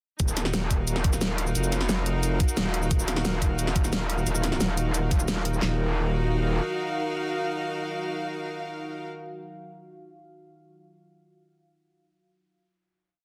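Mechanical and aggressive, this short, dark technical drum and bass piece at 177 BPM in Eb minor opens straight into a drop at 0.2 seconds. There, two up-front, tape-warm dubstep drum kits layer a knocking kick, huge snares, handclaps, bright hi-hats and a shaker beneath a metallic, distorted wobble bass with chorus, overdrive and sidechain pumping. A clear studio string section with light vibrato sustains an Ebmadd9 chord, joined at 1.2 seconds by a deep, moody sawtooth pad with chorus and reverb, both pumping to the sidechain. The drums stop around 5.6 seconds, and the strings and pad hold a final chord while the bass plays on until 6.6 seconds, all in a dense, heavily limited master.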